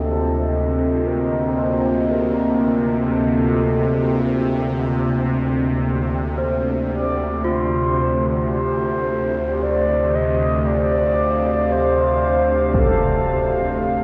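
A huge, cavernous reverb with a long tail washes over this ominous dark ambient drone in D phrygian, moving at a slow 56 BPM in 4/4 and cut from a longer piece as the harmony shifts from Cm to Dm7. An up-front, string-like bowed drone with phaser and vibrato anchors the low end beneath a deep, moody analog pad with chorus and phaser, while a round, horn-like synth lead with chorus and diffuse delay carries the melody and fades in alongside a ringing bronze metallophone playing arpeggios in the background. A very quiet, airy singing bowl enters at 6.4 seconds, and a huge, filtered impact lands at 12.7 seconds.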